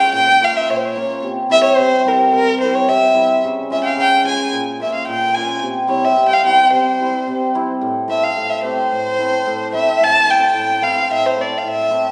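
Soulful yet festive, this klezmer excerpt moves at 110 BPM in a straight 2/4, tuned to A4 = 435 Hz and set in C phrygian dominant before shifting to A minor at 7.8 s. A single bowed violin carries the melody up front with a dark, woody tone and vibrato, while a hammered dulcimer, also up front, supplies shimmering, ringing acoustic accompaniment. Both play throughout, framed by a recital hall's lingering reverb, as in a church or concert hall.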